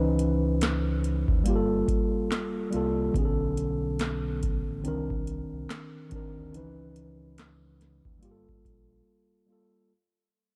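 Lo-fi hip hop at 71 BPM with a 16th-note swing, melancholic and nostalgic, where a mellow, clean tine electric piano sits up front on minor-ninth chords beginning on C#m9 and Gm9, a smooth sawtooth-and-triangle synth bass with vibrato and a moving notch holds the low end, and a booming, overdriven analog drum machine with a deep kick, crisp snare, handclaps and metallic hi-hats enters at 0.2 seconds, all in a dark, lightly reverberant production that fades throughout before a break at 9.1 seconds.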